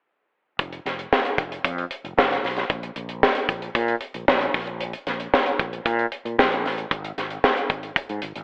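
Upbeat and breezy, this short piece of polished 1980s jazz-funk pop moves at 114 BPM in a straight 4/4, cut from a longer piece and tuned slightly flat of standard pitch. A tight, dry acoustic drum kit sits up front with hi-hat, a tight kick and a high-tuned snare wrapped in gated reverb, while a growly, amped fretless electric bass ranges from F1 to Bb2, both playing from 0.6 to 8.4 seconds. The whole mix carries a light reverb and a telephone-like tone.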